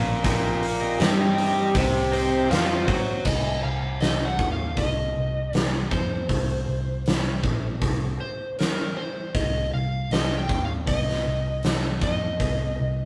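A straight 4/4 groove drives this smoky, gritty blues rock and southern rock fragment, cut from a longer piece. A punchy, round, foam-muted vintage bass carries it from the start, joined a moment later by a big acoustic rock kit, up front with a medium-tuned snare and crash, hi-hat and kick. A double-tracked, overdriven guitar riff leads off until 3.2 seconds alongside a thick, key-clicking tonewheel organ in the background. From 2.1 seconds a dark, fingered slide guitar takes the melody, all set in a rough rehearsal-room sound with moderate stone-room reverb.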